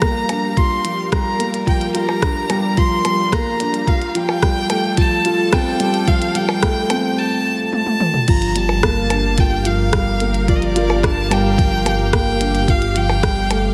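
A felt-muted upright piano sits up front with a soft, intimate riff, its action noise audible and its notes trailed by delay, while a clear, distant solo violin carries the melody with vibrato and a lush string section holds chords in the background. This cinematic, melancholic piano-and-strings electronica piece builds over a thumpy, pitched-down electronic kick and a minimal click kit of clicky hats, rim clicks, toms, blips and crash, set in a small room. After a drum fill, the drop arrives at 8.3 seconds as a dark, detuned saw bass enters with a deep, rumbling, sidechain-pumped tone, all framed by a moderate scoring-stage reverb in this cut from a longer piece.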